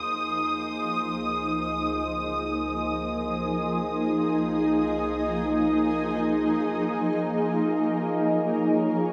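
A shimmering, detuned ambient pad sits up front in this peaceful, free-time ambient excerpt, fading in over its first 6.9 seconds and holding ethereal, granular chords with chorus until 9.1 seconds, while a deep, rumbling drone fades out in the background and a veiled, con sordino violin section bows a single high note, both parts stopping at 6.9 seconds, inside a wet scoring-stage reverb.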